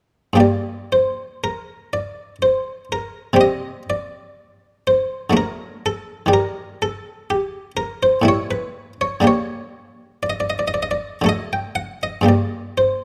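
In a rubato 3/4 at 61 BPM, this flowing, introspective excerpt of a baroque-style classical suite movement in G minor features a solo French-style buff-stop harpsichord, muted, lute-like and plucked, sitting dry and up front through close, detailed microphones, while a moderate recital hall reverb lends gentle space as the harmony moves from G minor through C5, D, E-flat and A5 before settling back on G minor at 12.3 seconds.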